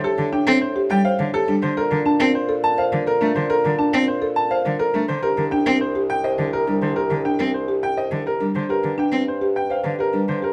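Light reverb surrounds this recording, with a clear, boxy piano and a rich, focused cello placed up front, while a mellow bassoon sounds distant and roomy behind them. It is a hypnotic, meditative fragment of minimalist classical pattern music in a straight 3/4, cut from a longer work. The baby grand carries the melody in its upper register, and a marimba struck with soft mallets on hardwood bars spins arpeggios in a woody, buzzing, dry and round tone. A single bowed cello plays accompaniment with vibrato, entering at 0.2 seconds and stopping at 10.4 seconds, and the bassoon holds the bass line with light vibrato and a soft attack. The harmony moves from D7(no3)/A through Bbmaj7 and C7(no3) to Gm near the close.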